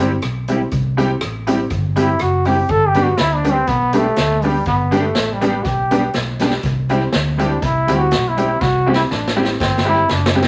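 A clear, close-miked trombone sits up front and carries the melody as a solo through this upbeat, cheerful ska excerpt at 122 BPM in a straight 4/4, moving over chords of C, G and back to C at 6.6 seconds. Beneath it, a honky-tonk upright piano adds detuned, jangly stabs with a woody, short-sustained tone, while a mellow electric guitar stays in the background with a dark, clean accompaniment. A vintage foam-muted fingered electric bass gives a round, punchy low end. The street-band drum kit enters at 0.2 seconds with hi-hat, boomy kick, rim click and a medium-tuned snare, its airy, polished sound touched by tape echo, and it plays a fill from 8.6 seconds to the close. The whole band sits in a wet club ambience that gives the cut a lively, roomy feel.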